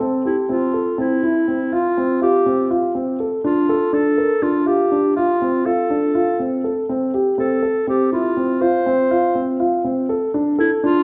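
Shimmering and playful, this contemporary chamber piece in 7/8 moves at 244 BPM in eighths in F major, with a dark, mellow grand piano playing up-front arpeggios of short sustain from 0.0 seconds while a smooth-topped clarinet sings a classical-style solo melody from 0.3 seconds, both bathed in the lingering reverb of a recital hall as the harmony passes from Fmaj7 through Bbmaj7 to F5 and Dm.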